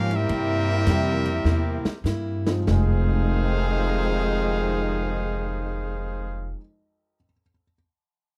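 A swung 4/4 pulse at 95-108 BPM eases into a slowdown over the first 2.7 seconds, where the drum kit, with its punchy kick and medium-tuned snare, plays a fill before dropping out at 2.9 seconds, as this dramatic, sultry big band swing fragment in F minor moves from a C7 toward Fm7. A brilliant trumpet section carries the melody with light vibrato over a clear, soft-attacked trombone line, while a woody pizzicato upright bass sits up front and a picked steel-string acoustic guitar, complete with finger squeak, stays in the background. A very quiet, intimate grand piano with audible action noise joins at 0.9 seconds, all captured in a dry, close 1970s-style studio sound.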